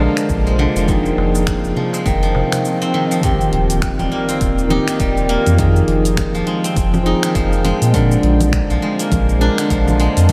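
A dreamy mix soaked in cathedral reverb opens this short cut from a longer organic downtempo piece, earthy and warm in mood, moving at 102 BPM in 4/4 with a swung sixteenth-note feel. Up front, a bright steel-string zither played with fingerpicks rings out silvery arpeggios through an analog delay, while a clean tine electric piano, heard through its built-in speakers, supplies accompaniment with sidechain pumping and its own analog delay. Beneath them, a deep, round sine sub bass holds the low end, and a tense, detuned, string-like drone with vibrato and a noise layer sustains chords in the background, pumping with the sidechain. The rhythm comes from an afro-pop kit of congas, finger snaps, hi-hat and shaker, plus a punchy, overdriven electronic kick set back in the mix, both in small-room ambience, while a soft-handed, band-limited clay darbuka plays only until 2.9 seconds. A very quiet electronic swell enters around 2.5 seconds and lands on an impact at 3.2 seconds as the harmony shifts from Bb7 and Fm7 to Eb6, before cycling back through Fm7 to Bb7.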